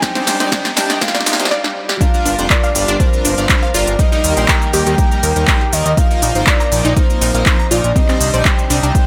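A straight 4/4 pulse at 121 BPM drives this euphoric, expansive progressive house piece, with a punchy, up-front electronic kick and a deep house kit of snare, handclaps, smooth hi-hat and shaker building through a fill and a very quiet riser and swell before the drop lands at 2.0 s. Over a fat, pumping analog bass and faint, tape-tinged congas, a round, dark octave-layered lead carries the melody with chorus, tremolo, vibrato and tape echo, while a bright, wave-folded unison pluck spins arpeggios in the background, a glossy chorused polysynth adds retro stabs, and a lush supersaw pad holds very quiet chords. The harmony moves from Cmadd9 through Gm7, Eb and Bbsus4 back to Cmadd9, set in a light reverb.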